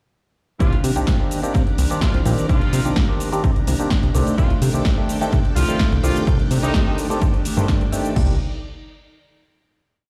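A punchy, tape-warm four-on-the-floor kick drives this short, groovy and nostalgic filtered disco house piece, with crash and floor tom on the same kit and programmed hats, shaker and a backbeat snare pumping with the sidechain. A fat, detuned sawtooth bass with a filter sweep plays a funky syncopated line beneath a stringy clav chord riff, a dark, clean electric guitar strumming sixteenths in the background, and a swirling vintage string machine pad with chorus and phaser. Tight, bright horns with light vibrato and octave doubling punch out short answering phrases through digital delay until 7.0 s, and the piece rings out on a closing chord from 8.2 s in a stone room reverb that sounds like a big sound system in a bare space.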